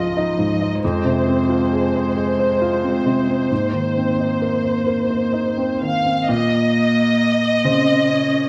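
A rubato lilt in 6/8 carries this fragile, longing fragment of a neoclassical piece for piano and strings, cut from a longer work. A felt-muted upright piano sits up front with an intimate, mellow tone and audible action noise, while a veiled con sordino violin section sings the melody with vibrato and a lone muted cello traces a second line with soft attacks and portamento. The dark, warm production places everything in a moderate concert hall reverb, and at 6.3 seconds the music moves into a new section.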